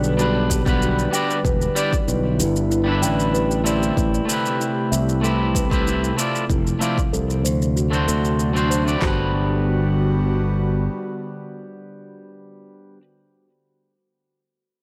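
Relaxed and blissful, this sunset chillout excerpt moves at 95 BPM in G major, with an up-front, twangy electric guitar at the edge of break-up playing tape-echoed accompaniment over a bright, growly fingered electric bass and a deep house kit whose punchy kick, fat snare and handclaps come in at 0.5 seconds, with an overdriven shaker already running from the start. In the background, an airy, breathy pad holds chorused chords while a woody, hollow kalimba rings out low-pass filtered arpeggios with tape echo, both under a filter sweep until 9.0 seconds, as the harmony runs through Gmaj7, Em7, Am9, Fmaj7 and D7 before returning to Gmaj7. The sound is dry and gritty, with the guitar trailing on alone after the other parts drop away, ending at 13.0 seconds.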